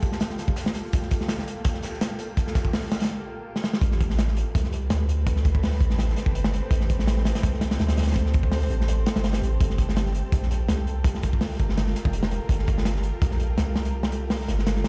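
Dark and frenetic, this drum and bass cut leans into jungle with a lightly swung 16th-note feel. A granular cloud pad holds sustained chords throughout, its detuned, blurred tone carrying built-in reverb and a vintage 12-bit sampler grit while a filter sweep shapes it through the opening build-up. Beneath it, a long, deep 808-style sine bass sits up front with a fast attack and decaying notes, trimmed by a high-pass filter. A crunchy breakbeat kit drives the track with a tight kick, a medium-tuned snare and hi-hat, sounding saturated and gritty with a rolled-off top, while a gated 80s kit with snare, hi-hat and tambourine sits airy and polished in the background until 3.1 seconds. A short break and a drum fill at 3.6 seconds lead into the drop at 3.8 seconds, where the harmony moves from Gm9 to Am9 before returning to Gm9 at 9.6 seconds.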